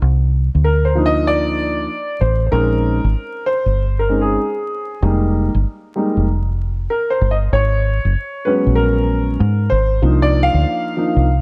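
A round, punchy, foam-muted fingered electric bass opens this mellow, nocturnal jazz-hop cut, sitting up front at 96 BPM with a swung 16th-note feel, and a dark, boxy grand piano joins at 0.6 seconds to carry the solo over minor eleventh chords moving from Cm11 through Bbm11, Fm11 and Abm11 back to Cm11. Vinyl crackle and a light small-room reverb give this short fragment of a longer piece a close, late-night hip hop atmosphere.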